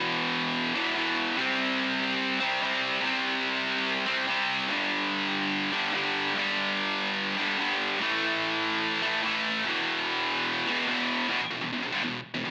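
Rock in E minor at 145 BPM, this aggressive, heavy fragment from a longer piece features a lone scooped high-gain electric guitar, bright and double-tracked, sitting up front with distortion and slapback echo as it moves through power chords on E, C, G and A. The picked part ranges from E2 to C4 and plays throughout the full 12.5 seconds, shifting into a new section at 11.3 seconds. Light reverb and a small speaker sound frame the recording, which is tuned slightly sharp to A4 = 441 Hz.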